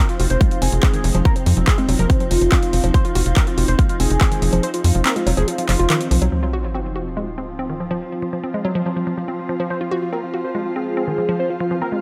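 The groove is a straight 4/4 at 142 BPM in F minor: a punchy, overdriven electronic kick sits up front with a dark, tight sequencer bass from 0.2 seconds, while an overdriven techno kit adds handclaps and filtered hi-hats. This psychedelic trance passage, cut from a longer piece, feels intense and alien. A woody, wave-folded pluck plays a percussive riff with chorus and delay throughout, and a thick, detuned unison lead carries the melody through a phaser, cassette-tape colour and digital delay, with vibrato on its mellow sustained notes. Around them, an evolving wavetable pad morphs through bright sustained chords and an ethereal, airy pad adds texture in the background, all of these melodic parts pumping with sidechain. The kick drops out at 4.6 seconds, and at 6.3 seconds the drums and bass stop as an up-front sub drop hits, leaving the pads and pluck before the lead returns at 9.7 seconds. 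A light reverb gives the whole a modest sense of space.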